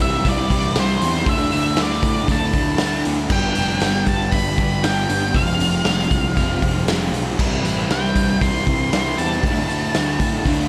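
This is a short cut from a longer shoegaze and dream pop rock piece in C major, moving at 118 BPM in a straight 4/4 with a dreamy, blissful mood. An octave-fuzz lead guitar carries the melody in a dark, distorted tone with digital delay. Beneath it, an overdriven semi-hollow guitar plays a riff through reverse reverb, while a very quiet, thick fuzz guitar adds a low riff of its own. A fuzz-laden picked electric bass adds overdriven grit, and a raw garage drum kit sits up front with a punchy kick, a medium-tuned snare, hi-hat and crash, saturated and gritty with a rolled-off top. A faint, jingly vintage tambourine rides along in a light reverb and small-room ambience as the chords cycle through C, Dsus2, G and a darkening Fm.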